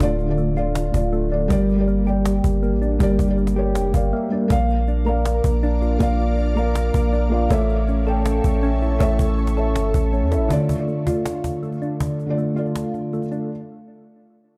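This hip hop and trap piece moves with a half-time feel and a dark, brooding mood, cut from a longer work. A felt-muted upright piano carries the accompaniment with a boxy, intimate tone and audible action noise. Round, gentle electric-piano-like synth keys play arpeggios through chorus, phaser and tape echo. A deep, sine-toned 808-style bass sits up front beneath a snappy, close and dry cajon struck with hard hands. At 5.2 seconds an ethereal, airy pad of detuned sawtooth layers enters with a slow attack, ensemble chorus and phaser. It and the bass stop at 10.5 seconds, as the chords, having moved from Dm through Gm, Bb and A, return to Dm. A brief silent gap and a closing break at 12.8 seconds punctuate the dark production's small-room ambience.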